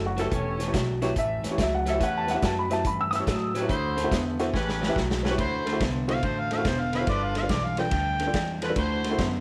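A swung shuffle at 142 BPM in 4/4 drives this rollicking, soulful electric blues fragment, cut from a longer piece. From the opening, a dark upright piano with audible action noise comps in its upper-middle register. Beside it an electric guitar through a small old amp plays a slightly broken-up, compressed riff with a warbly pitch drift, while a woody, growly upright bass carries the low end. A distant horn section joins with jazz-style stabs, and a vintage drum kit with a tight kick and rolled-off top plays hi-hat, ride, snare and kick, adding a fill before the harmonica solo begins at 5.4 seconds. The mellow, overdriven harmonica itself sounds from 6.1 to 8.6 seconds, up front with scooped notes, over chords moving through A9, D9 and G9. Light reverb and studio ambience surround the whole.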